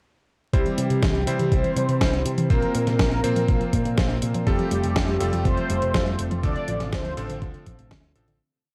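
Italo disco with a nostalgic, melodramatic mood, built on an overdriven four-on-the-floor electronic kick drum and a gated 80s digital drum machine supplying closed hi-hat and a gated-reverb snare. A round, punchy picked electric bass with an envelope filter jumps octaves beneath a bright electric grand piano playing clangy held chords with syncopated pushes, while a warbly dusty pluck runs a lo-fi eight-step arpeggio and a smooth analog pad sustains chords in the background over C, Bbsus2, Fadd9 and Dm7. A mellow synth brass carries the motif-based melody with vibrato, chorus and tape echo, all in a dry, gritty recording with vinyl crackle that fades out from 5.8 seconds.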